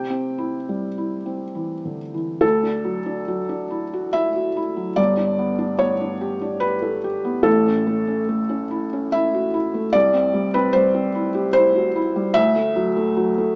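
A felt-muted upright piano plays alone from the first moment, its mellow, intimate tone sitting up front with audible action noise, in this hopeful, peaceful neoclassical minimalist piece in D major at 72 BPM, a rubato 3/4 with uneven beats, moving through C, Dadd9, G and A chords, then back through C before returning to Dadd9 at 12.4 seconds, heard in a moderate stone-room reverb with a small-speaker, live-in-the-room sound.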